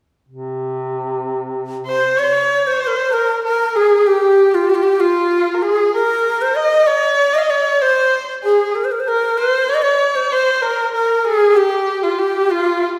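A breathy, bright end-blown ney carries the melody up front with vibrato and a soft attack over a clear, nasal bowed erhu second line with portamento, both entering at 1.9 seconds after a warm duduk drone on C3 that sounds from 0.3 to 2.2 seconds, in a hypnotic, soulful Persian modal piece in dastgah shur at 64 BPM in a straight 6/8, cut from a longer work and set in a reverberant recital hall with a 1.8-second decay.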